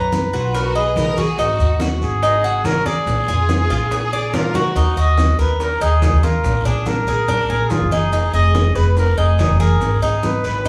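A breathy, whispered trumpet carries the melody up front in this sultry Cuban son and guajira excerpt, over a metallic, picked tres arpeggiating with doubled strings and a growly, woody pizzicato upright bass. A clear, focused bowed violin section adds a second line from 0.3 s to 4.7 s, and a drum fill leads into the minor-key second half. In the background sit bright, low-tuned congas, round, distant bongos, a raspy guiro and very quiet, grainy maracas, all played live together in one small room with a wet studio reverb.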